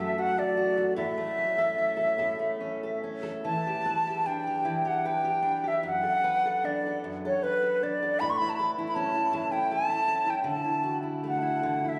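A reedy wooden flute and a fingerpicked steel-string acoustic guitar begin together at 0.0 seconds in this haunting, longing Celtic slow air, cut from a longer piece. The flute carries the melody up front, its airy, close-miked tone marked by vibrato and tongued notes. The full-bodied jumbo guitar sits up front too, fingerpicking the accompaniment beneath it. The tune moves in 3/4 with a free, rubato feel at around 68-79 BPM in E dorian. The harmony drifts from F#m and A into a second passage from 3.4 seconds that moves through Em7, D6/F#, A and Dadd9. A wet cathedral reverb with a 6.3-second tail surrounds both instruments, and the sound carries the compressed, roomy character of a phone recording.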